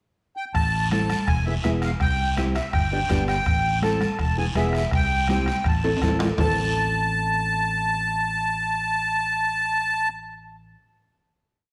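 Passionate and driving, this short cumbia in A minor moves at 164 BPM, with a reedy, sweet accordion up front carrying a motif-based melody of call phrases over a fingerpicked nylon-string guitar playing rhythmic triad chords with audible finger squeak and a dark, punchy fingered electric bass playing a cumbia figure through Am, E, C and G. Bombo with soft beater and rim, ringing metal-shell timbales with bell, vintage thick-skinned congas and a raspy, distant guiro drive the groove until a drum fill at 5.8 seconds, after which the percussion drops out and the accordion, bass and guitar hold a final Am chord. The whole piece sits in a moderate recital-hall reverb.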